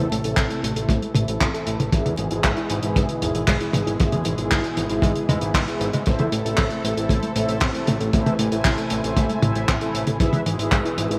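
Melodramatic and bittersweet, this italo disco excerpt sets a lush, airy unison pad with chorus and phaser against a warbling, dusty pluck arpeggio and mellow, brassy synth stabs, both carrying filter sweeps, while a fat, nasal analog bass and an up-front, cloth-damped, gritty drum kit with handclaps, hi-hat, toms and a tight, muffled kick drive the Am to E/G# changes through bright 1980s-style digital production with plate reverb and vinyl crackle.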